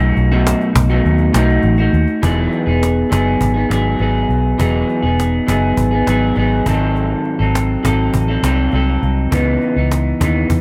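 A light reverb and small room ambience wrap this short, dreamy indie pop and bedroom pop clip, cut from a longer piece and moving at a laid-back 102 BPM in a straight 4/4 in E major. Up front, an electric guitar through a small old amp carries the accompaniment with a bright, twangy, slightly broken-up picked tone, bathed in lush chorus and a warbly pitch drift. Beneath it, a vintage muted fingered electric bass sits forward in the mix, dark, round and foam-muted, holding the low end from E1 to E2. A cajon with snares keeps time quietly, its hard-handed hits snappy, compressed and saturated. The harmony opens on B7, settles into Emaj9 at 2.2 seconds, then passes through G#7b9 before landing on C#m9 at 9.3 seconds.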